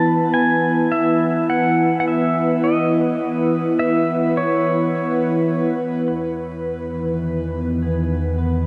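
A twangy, up-front pedal steel guitar with tape echo carries the melody over an airy, breathy chorused pad whose filter sweeps through the first 6.1 seconds, before a round sub bass enters at 6.1 seconds in this peaceful, serene ambient piece in E major at 52 BPM, all bathed in huge reverb and cassette tape character.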